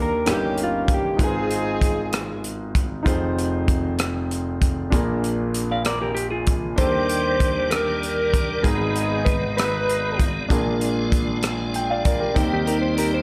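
Slow, uplifting gospel in 6/8 at 64 BPM in Eb major, cut from a longer piece, with an up-front concert grand piano of deep bass and long sustain carrying the accompaniment from start to finish beside a crisp, airy fusion drum kit of tight kick, hi-hat and rim click. A punchy saxophone section with light vibrato carries the melody alongside a slightly broken-up, compressed slide guitar set in the background under slapback echo, both sounding in two short phrases, while a clean hollow-body electric guitar adds a brief second line at 5.7 seconds and again at 12.5 seconds. From 6.8 seconds a piping tonewheel organ with key click, chorus vibrato and slow rotary speaker fills in sustained chords, lending the jubilant close its glow in light studio reverb.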